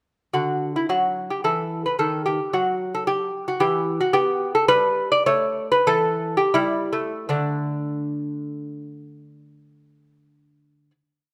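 A delicate, fingerpicked solo lute with gut and double courses, some strung in octaves, sits up front in a moderate recital-hall reverb, playing a short, complete baroque-style dance in D major and 3/4 that flows at a rubato 78-115 BPM, its single-line melody set against an independent bass line in counterpoint, easing into a slowdown from 2.8 to 7.3 seconds before settling on a final chord that rings out from 7.3 seconds.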